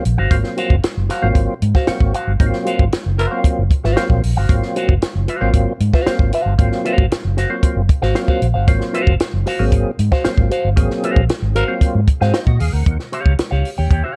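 Funk with a strutting, funky swagger, built on an up-front compact cocktail kit with a high-tuned snare and a dark, foam-muted fingered electric bass that sits round and punchy beside it. A fat, percussive tonewheel organ throws stabs through chorus vibrato, a slow rotary speaker and tape echo, while a twangy electric guitar run through an envelope filter and phaser plays bright, clean accompaniment over an Ab13 groove that shifts to Eb9 at 12.9 seconds. A raspy, distant tenor saxophone adds only brief gritty touches, at 3.2 and 11.6 seconds, within the band accents, all set in a small, dark-sounding room.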